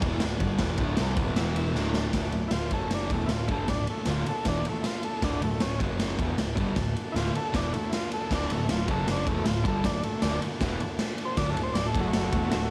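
A straight 4/4 garage rock beat at 156 BPM drives this rowdy, raw excerpt in D major: a gritty, up-front drum kit with a punchy kick and a pumping stone-room sound, under a double-tracked fuzz guitar riff and a growling, overdriven electric bass. A buzzy combo organ with heavy vibrato holds sustained chords throughout, and after a drum fill at 1.8 seconds a second vintage, buzzy organ takes a solo from 2.5 seconds, its cassette-tape coloring fitting the cassette home-recording feel. The harmony rocks between D and F#5.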